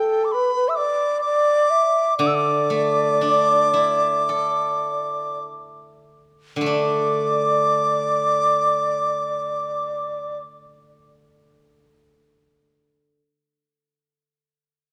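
A breathy, hollow xiao carries the melody up front over a reedy, buzzing large dizi playing a higher second line in this pastoral yet festive Chinese traditional chamber excerpt, with a silvery, ringing steel-string zither entering at 2.2 s as accompaniment, all in a free rubato feel that slows through the opening section before a second section begins at 6.7 s, set in a moderate concert hall reverb.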